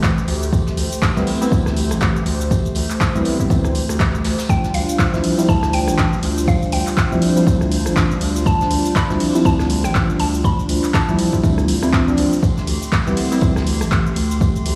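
A moderate echo-chamber reverb, a large studio reverb and studio ambience surround this smooth, late-night deep house excerpt at 121 BPM in D dorian, swung on the sixteenths and moving from Am7 to Dm11 at 4.5 seconds and back at 12.4 seconds. A punchy, tape-warm electronic kick and an analog drum machine of handclaps, hi-hat, ride, rim click and shaker drive the groove, while a dark brushed acoustic kit with snare, hi-hat and tambourine sits in the background. A round, wave-folded analog bass with tube saturation and a hollow, flute-like pad pump under the sidechain, joined by deep, detuned chord stabs with tape echo from 1.2 seconds and a woody, FM mallet-like pluck melody with cassette warble and tape echo.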